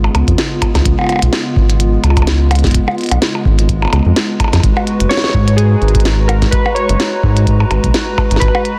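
A round, dark analog bass sits up front in this eerie, intricate IDM excerpt, its deep tone evolving beneath a 127 BPM pulse in 4/4 with a light swing on the sixteenths. A glitchy drum kit of tiny snare, clicky hats and percussion blips runs alongside an overdriven electronic kick that enters at 0.3 seconds, both carrying the boxy character of a small room. A hollow, flute-like pad with chorus holds soft sustained chords in G# dorian, moving from C#7 to G#m9 at 4.6 seconds. At 5.1 seconds, warbling lo-fi synth keys with chorus and delay bring a nostalgic, full-bodied melody in a narrow upper-middle range. Light reverb lends a digital ambience, and the master is dense and heavily limited in a modern style.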